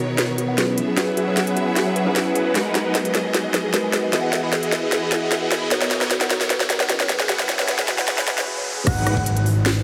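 Dreamy and emotional, this future bass build-up in a half-time feel layers a mellow tine electric piano with chorus, pumping and dub echo, a clear, biting string section in the background, a soft round pluck playing arpeggios, and huge, lush supersaw chords that enter at 1.0 seconds under a phaser and a filter sweep, while a trap kit with a sharp snare and crisp hats drives a drum fill over chords moving from Bmaj9 through G#m7 and Emaj7. After a brief break, an impact lands at 8.9 seconds with a fat, saturated analog bass, a knocking electronic kick and a short airy lead. The mix sits in a huge ambient reverb with a heavily compressed, radio-like sound.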